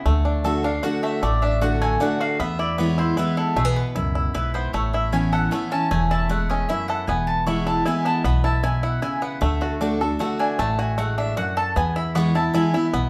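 In a straight three-four lilt, this lively, virtuosic bluegrass excerpt puts a twangy, fingerpicked banjo melody up front over a bright, full-bodied dreadnought guitar and a thumpy, dark gut-string upright bass, while a picked, double-strung mandolin takes a solo of stabs from 0.6 seconds, all moving through D, E and Aadd9 chords in a moderate large-studio reverb.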